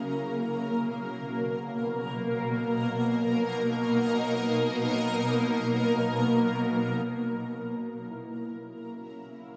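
Soaked in a cathedral-like reverb with a long tail, this peaceful, serene ambient excerpt rests on a shimmering, ethereal pad that sits bright and up front holding sustained chords with chorus and phaser, until muted, felt-like synth keys slip in at 8.1 seconds with dark, intimate arpeggios set back in the background under chorus and delay.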